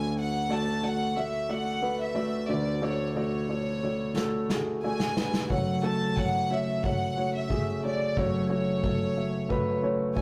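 Piano-driven pop in F# minor at 90 BPM in a straight 4/4, this driving, earnest passage is cut from a longer piece. A concert grand piano carries the accompaniment up front with a deep bass. Over it, a studio violin section plays the melody with a soft, floating sul tasto tone that sounds close and pure. At 4.2 seconds an acoustic drum kit enters with a fill on punchy kick and medium-tuned snare played with bundle sticks, its sound airy and polished. The harmony rests on D before moving to F# minor at 5.5 seconds, and the recording sits in a moderate stone-room reverb with a rough rehearsal-room character.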